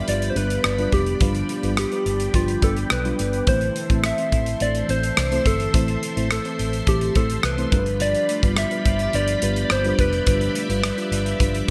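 A round, gentle FM synth lead carries the melody through chorus and digital delay in this moody, dramatic 1980s-style pop passage, while a dark, full-bodied FM electric piano with tremolo plays the accompaniment beneath it. A lush string machine ensemble holds sustained sawtooth chords with a slow attack, colored by phaser and ensemble chorus, and a bright, twangy twelve-string electric guitar picks a clean, compressed riff in the background with subtle chorus and digital delay. From 0.1 seconds a modern studio drum kit sits up front at 106 BPM in a straight 4/4, its punchy kick, hi-hat and rim click sounding airy and polished. A vintage foam-muted fingered electric bass adds a round, amped low end. The harmony moves from G7 to Am at 3.5 seconds and back to G7 at 7.7 seconds. A moderate plate reverb and bright digital production give this short section cut from a longer piece its sheen.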